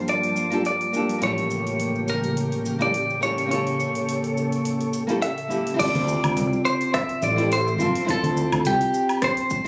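A 105 BPM sunset chillout groove in 4/4 with a light swing on the sixteenths, in D minor, wistful and warm, cut from a longer piece. A compressed, up-front clean electric guitar carries the melody over fingerpicked nylon-string guitar with dark, full-bodied tone and finger squeak, both with delay, while a punchy fretless electric bass and a smooth R&B kit with metallic hats, rim click, shaker and woodblock hold the pulse. An ethereal, warbling, detuned pad with chorus sustains chords until 5.8 seconds, when the harmony moves from Gm9 and A7b9 to Dm11 and an overdriven, deep electronic kick joins, all heard through a phone recording in a club-like room.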